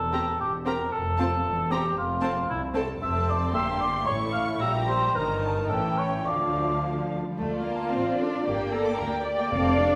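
A quick 2/4 pulse at 113 BPM, pushed and pulled with rubato, drives this urgent, restless classical-period orchestral movement, which turns from F major to D minor at 3.0 s. Violin sections carry the melody and a second line with light vibrato and soft attack, one of them bowed sul tasto. A mellow, distant cor anglais adds its own line until 6.8 s over lush violas, rich, even cellos and a focused double bass section, and round timpani under soft mallets enter in the background at 9.5 s, all within a reverberant recital hall.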